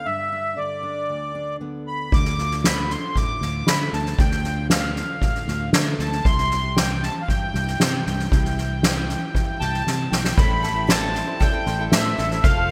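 A reedy, sweet accordion carries the melody up front in this hopeful, uplifting indie folk excerpt at 116 BPM, its light tremolo tuning shimmering over a full-bodied fingerpicked dreadnought guitar. At 2.1 seconds a round, punchy fingered electric bass and a soft-mallet drum kit with a fat snare and boomy kick join in, and the arrangement builds through G, Dm and C toward a drum fill. At 10.4 seconds the music settles on Am7 as a boxy, picked parlour guitar and a mellow mandolin playing arpeggios through digital delay enter, all within a rough home demo mix with light studio reverb.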